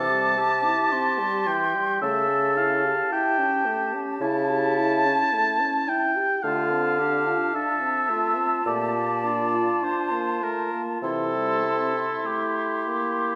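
In a flexible, rubato 4/4, this slow romantic movement for wind quintet unfolds with a tender, warm mood, cut from a longer classical piece. The hollow, airy concert flute carries the melody high above, its crisp attack and vibrato heard close to the microphone. Just beneath it, the oboe sits up front with a smooth top and light vibrato as it sings a second line. Clarinet and French horn supply the accompaniment from further back in the room, the horn adding its own vibrato, while the close-miked bassoon holds the bass with vibrato until it drops out at 12.0 seconds. The harmony moves from C through A7/C# to Dm7 and Bbmaj7 before settling back on C, and a wet recital hall reverb wraps the ensemble in a generous halo.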